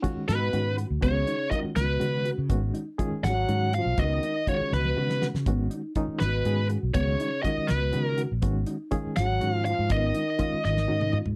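Dry, close 1970s-style electric jazz fusion in a slick, funky 6/8 opens on a barky, reedy electric piano with overdrive and fast tremolo, dark clean stabs of ensemble-chorused electric guitar and a damped kit with a fat snare and tight kick; a punchy fretless bass with subtle chorus, a bluesy distorted lead guitar with slapback echo carrying the melody up front, and a breathy trombone with light vibrato and scooped notes on a low second line join almost at once, while the drums play fills at 4.7 and 10.6 seconds over a vamp between G#m7 and C#9sus4.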